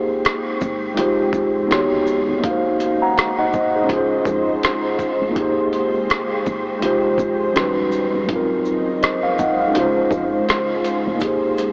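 Soaked in a huge ambient reverb and tinted by cassette tape and an AM radio quality, this short lo-fi hip hop excerpt feels dreamy and nostalgic, with a gentle swing on the sixteenths. A mellow tine electric piano sits up front, its clean, direct tone dulled slightly by tape and a low-pass filter as it carries the accompaniment from the very start. Beneath it, a granular cloud pad enters at 0.2 seconds with blurred, detuned sustained chords that swell in slowly and evolve, thickened by ensemble chorus and its own built-in reverb. A woody, round FM bass stays in the background with a soft, dark, decaying tone, while a dusty soul sampler-style kit of thumpy kick, hi-hat, rim click and shaker adds a compressed, gritty texture with a small-room character. The harmony cycles through rich jazz chords such as Abmaj9, Fm9, Eb7alt and Dbmaj7, and a grainy, barely audible egg shaker slips in at 11.2 seconds just before the cut.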